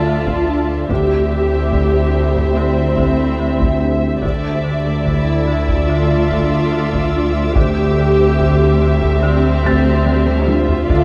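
A woody, vintage marimba riff opens the cue, quickly joined by a background taiko ensemble struck with heavy sticks that lays down a straight 4/4 pulse, with a drum fill near 10.1 seconds, in this ominous, eerie suspense film-score cue that alternates between Dmadd9 and C/D. Con sordino string sections carry the weight: a distant, veiled violin melody over a second violin line, a close viola accompaniment, lush cellos and very quiet double basses holding the bass beside a deep, clean sine sub-bass drone, while a higher muted violin texture enters at 4.2 seconds. A dark, roomy French horn section and a very quiet, ethereal pad sustain chords, a felt-muted upright piano with audible action noise adds faint high texture at the edges, and the whole sits in moderate scoring-stage reverb under a layer of vinyl crackle.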